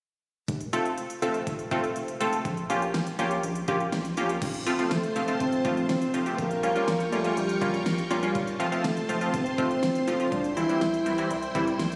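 A round, deep analog bass and a layered electronic pop drum kit with a knocking kick, fat snare and crisp hats open this nostalgic, bright synth-pop excerpt in F major at 122 BPM, joined at once by a punchy, funky sawtooth polysynth comp with chorus sitting up front, before shimmering vintage string-machine violins with ensemble chorus enter at 4.4 seconds and a dark, veiled bucket-muted trombone with light vibrato and slapback echo takes the melody at 4.9 seconds, all heard as a phone recording in a room with a lush hall reverb.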